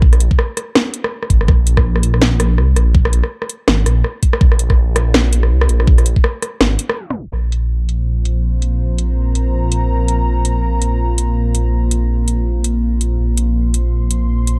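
A thick, swirling detuned saw bass leads this tense, dark half-time drum and bass excerpt at 164 BPM, its saturated unison tone moving through a phaser between Ab1 and Eb2 and sitting up front for the whole excerpt. Alongside it, a knocking electronic kick and a layered kit with a cracking snare, metallic hats and rim clicks drive a swung half-time feel, with low-pass filtering dulling the snare, hats and room sound. The drums carry a tape-softened character, as if re-recorded in a small room. Near the midpoint, a tape stop at 7.0 seconds drags the groove down, and the kick drops out at 7.2 seconds. A deep, moody analog pad then rises in at 8.1 seconds over a Bb5 chord, slow-attacked and full-bodied with chorus and a sidechain pump. The whole production stays dry and dark.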